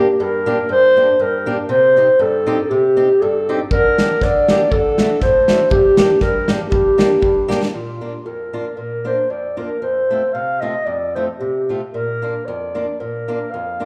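A dark, distant clarinet carries the melody over a boxy, fingerpicked acoustic guitar in this festive, jolly alpine dance-band excerpt, cut from a longer piece. It moves at 118 BPM in 2/4 with a light swing, opening in G minor. The clarinet sits up front in a roomy classical style, while the guitar supplies swing-style accompaniment, both touched with slapback echo. A natural country drum kit with hi-hat, a medium-tuned snare and a punchy kick joins at 3.7 seconds and plays through a fill at 7.5 seconds. At 7.7 seconds the tune brightens into Bb major for its second section. The whole performance comes across as a live gig heard through a club PA, with light reverb and small-room ambience.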